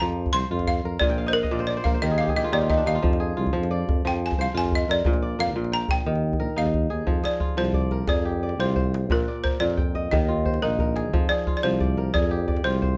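Flowing and reflective, this cut from a longer West African string and xylophone piece in a straight 12/8 sets a woody, buzzing balafon melody with plate reverb and a featured passage up to 7.1 seconds over bright, ringing fingerpicked kora arpeggios with a fill from 1.0 to 3.0 seconds, a warm tuba bass with scooped notes, and tight, cracking djembe, all in a moderate studio room.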